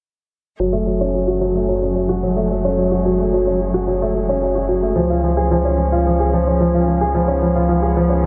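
Electronica at 110 BPM in F# minor, moving and hypnotic, this short excerpt sets an intimate, woody upright piano riff up front, its action noise audible, trailing delay and shimmer reverb under a filter sweep. A bowed string quartet holds smooth, vibrato-touched chords beneath it while a deep, rumbling detuned saw bass beats and sustains, all three playing from 0.6 to 8.3 seconds. A huge ambient reverb and low-pass filter frame the mix, with the harmony moving from F#madd9 to C# at 5.0 seconds.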